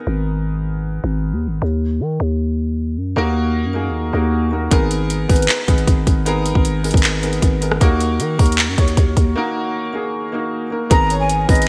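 Hip hop with a trap edge, this short cut from a longer piece moves at 155 BPM in a half-time feel in G# minor, carrying a melancholic, brooding mood. A dark, mellow concert grand piano opens the track with lush chorus on its chords, shifting between G#madd9 and D#m, while a growling, buzzy 808-style bass enters at 0.1 seconds with a fast attack and decaying tail, both placed up front. The trap drum kit arrives at 4.7 seconds, the loudest part, with a hard-clipped kick, metallic hi-hats, handclaps and rim clicks, its tape-warm sound treated with gated reverb. Near the close, at 10.9 seconds, an airy jazz flute sounds from a distance with vibrato and expressive tonguing, and a smooth, gliding portamento lead with chorus, phaser and digital delay sits faintly in the background beneath it. The overall production is bright in a 1980s digital style with light reverb.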